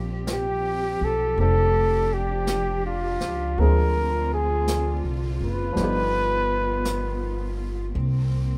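A tender, late-night jazz ballad excerpt in swung 4/4 at a slow 55 BPM in Bb major, where a veiled, bucket-muted trumpet with light vibrato carries the up-front melody from 0.3 s over lush bowed cello-section chords, a growly pizzicato upright bass, a woody upright piano set back in the mix that drops out at 8.0 s, and quiet brushes on a natural-sounding kit, inside a moderate studio reverb as the harmony moves from Bb69 through Dm7b5 to Gaug7.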